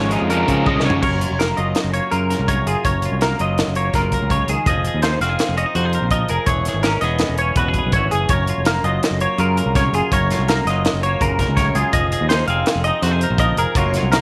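Math rock and midwest emo in 5/4, wistful and bright, opening with a double-tracked, crunchy overdriven guitar riff up front that stops at 1.0 s after a drum fill, leaving warm, picked clean electric guitar accompaniment beneath compressed, twangy arpeggios from a direct-recorded clean guitar with analog chorus, a growling, overdriven fingered bass up front, and a crisp fusion kit with a high-tuned snare and tight kick pumping in a small room, all moving over chords from Dbmaj9 through Fm7, E6 and Gbmaj7 in this cut from a longer piece.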